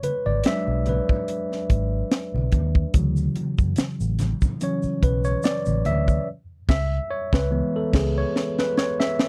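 Lush 1970s-style soul with a smooth, cinematic mood, heard in a short cut from a longer piece. A worn, slightly out-of-tune tine electric piano, lightly overdriven through its built-in speakers, carries a solo across the whole passage while moving through E7, Dmaj7 and C#m7. Up front beside it sit a tight, dry funk kit with bright cymbals and a high-tuned snare, and a dark, round, foam-muted fingered bass that enters at 0.3 seconds with a punchy, amped tone. Low-tuned congas with a thick skin sit distant in the background, and a grainy, mellow tube shaker joins them between 2.9 and 6.3 seconds. The band hits an accent from 6.3 seconds, and a drum fill closes things out from 7.9 seconds in a dry, close 1970s-style studio sound with little reverb.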